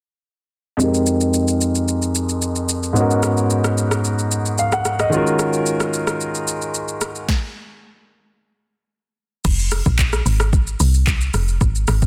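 A filtered concert grand piano opens this deep, soulful amapiano cut alongside an up-front, overdriven electronic R&B kit of soft kick, sharp snare, crisp hats, rim clicks, handclaps, shaker and crash, the piano's rich low end moving through lush minor eleventh chords under a filter sweep. The piano stops at 7.3 seconds, leaving the drums to carry a short break until the drop at 9.4 seconds. There, a woody, punchy log drum bass arrives with a fast attack and mellow decay for the final stretch, all under light reverb in a dense, heavily limited modern master.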